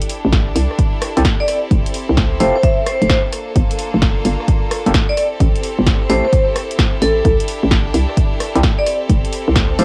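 A ringing hard-mallet vibraphone melody with tape echo carries this sunny, bouncy two-step UK garage excerpt at 130 BPM in C mixolydian, riding over a hollow, knocking FM bass from 0.2 seconds, a punchy up-front electronic kick, a tape-warm analog drum machine with swung hi-hats, rim clicks and snare, mellow organ stabs treated with chorus, phaser and tape echo from 1.2 seconds, and a bright, biting violin section holding sustained chords with a sidechain pump, all moving through lush C69, Fmaj9, Gm9 and Am7 harmony with a dry, cassette-dusted home-recorded character.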